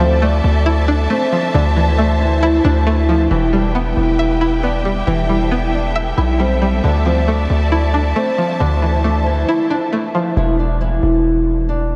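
This dark, menacing hip hop excerpt opens with all four parts at once: a fingerpicked flamenco guitar carrying the melody, a twangy resonator pluck with chorus beneath it, lush bowed symphonic strings holding sustained chords, and a punchy, heavy 808-style bass sitting up front. The tempo is 136 BPM in 4/4 with a half-time feel, and the harmony in E phrygian moves from Dmadd9 to Em and back before landing on E5. The guitar's fresh-string acoustic tone is softened by a low-pass filter and a diffuse ambient delay, while the bright pluck carries a filter sweep and a fast, decaying attack. The strings add vibrato and portamento in an expressive ensemble sound. By 10.4 s the pluck and strings have dropped away, leaving guitar and bass to close the clip at 12.0 s. The mix is soaked in a cathedral reverb with a 5.6-second decay, giving it a dreamy, cavernous atmosphere.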